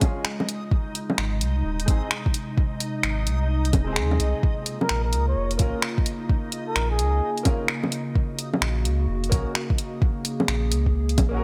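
Lightly reverberant and softly ambient, this melancholic, nocturnal future garage passage in Bb minor moves at 129 BPM with a swung 16th feel, as an overdriven soft electronic kick and a tape-warm garage kit of bongos, finger snaps and hi-hat sit up front over a warbling, lo-fi pad with chorus and sidechain pumping, a bright, woody upright piano pumping through digital delay, a reversed, dreamy swelling texture, and a deep, round sub bass from 1.2 seconds, while a dark, veiled bucket-muted trumpet with light vibrato and tape echo sings a brief solo between 4.8 and 7.4 seconds.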